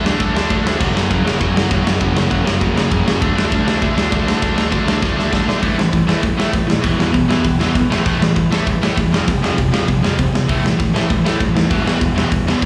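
Energetic and upbeat, this punk rock clip, taken from a longer piece, charges ahead on a straight, driving beat. A cranked stack guitar carries the riff up front, its bright, overdriven tone double-tracked and given a touch of slapback echo. Underneath sits a fuzz-laden electric bass, growly and picked, tucked into the background. The big acoustic drum kit stays up front with a punchy kick, medium-tuned snare, hi-hat, ride and crash ringing in a stone room, and a fill from 5.0 to 5.6 seconds launches a new section. The chords move from D5 and F#5 into a stretch that returns to A5 between E5 and F5. The whole performance sounds like a live gig heard through the venue's PA, with small room ambience and a hall-like reverb around it.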